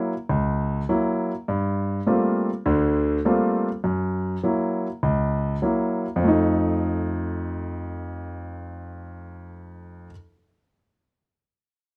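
A 4/4 swing gives this short solo jazz passage its lilt, the eighth notes leaning with a buoyant, uneven bounce. A concert grand piano plays alone for the full 10.1 seconds, reaching from deep bass notes up into its middle register, in a mood that feels playful yet sophisticated. The harmony moves from Gb7 to a rich Gm11 and back again before settling onto F7 at 6.2 s, where a second section opens. The piano sits up front and intimate, its polished, present tone carrying short sustain, with the soft clatter of the action clearly audible. Close, detailed miking and a light touch of reverb keep the sound warm and immediate, as if the listener were seated beside the keyboard.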